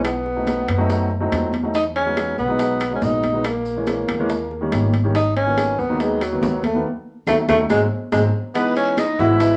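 A breathy, mellow tenor saxophone carries the sultry, driving melody in this Afro-Cuban jazz excerpt, its scooped notes and vibrato sitting up front beside a deep-bassed concert grand piano and a growly, woody pizzicato upright bass. Bright congas, tight high-tuned bongos, ringing timbales, dry claves and grainy, distant maracas fill out the percussion, and a band accent with a drum fill leads into a raspy guiro at 8.5 seconds and a crisp, chiffy jazz flute with tape echo at 8.6 seconds. The whole mix has the warbling pitch drift of worn cassette tape, set in a small club room.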